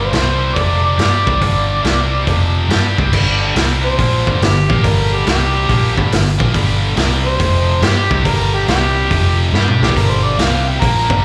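This is blues rock in the power-trio mold with a southern rock edge, heavy and brooding, swinging in 4/4 and cut from a longer performance. A bright, double-tracked distorted guitar picks a tight power-chord riff while a dark, round, foam-muted electric bass sits underneath. A raw garage drum kit with a boomy kick, a medium-tuned snare, a saturated sound with a rolled-off top, hi-hat, crash and toms sounds up front. An amplified, overdriven harmonica carries the melody and takes a jazz-style solo from 3.1 seconds, full of vibrato, tongue slaps and scooped notes. A drum fill arrives at 9.5 seconds. The whole band comes across as a live gig heard through the venue's PA, wrapped in club reverb.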